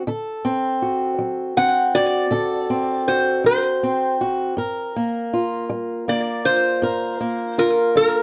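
Acoustic country blues in G minor at a slow 53 BPM in 12/8, this soulful, smoky fragment of a longer piece opens with a boxy, fingerpicked swing-style acoustic guitar on D7. A metallic, nasal resonator slide guitar, played with fingerpicks and carrying a slapback echo, enters at 1.6 seconds with an up-front melody, and the harmony later moves to Gm7 at 4.6 seconds, all captured in a dry, close 1970s-style studio sound with light reverb.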